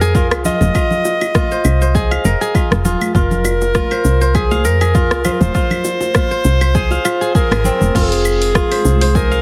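Hypnotic and warm, this organic downtempo excerpt from a longer piece sets a close-miked, classical-style solo clarinet with delay against crisp, ringing fingerpicked kora arpeggios through digital delay, over a woody, round FM bass that sits up front with sidechain pumping. A punchy electronic kick and a deep house kit of claves, crash cymbal, dark hi-hats, rim click and shaker carry a light 16th-note swing, while bright, hard-handed congas and bongos play until 7.9 seconds, just after a band accent at 7.5 seconds. At 8.3 seconds a blurred, detuned granular cloud pad drifts in quietly in the background, and the whole mix has light reverb and a heavily compressed, radio-like sound.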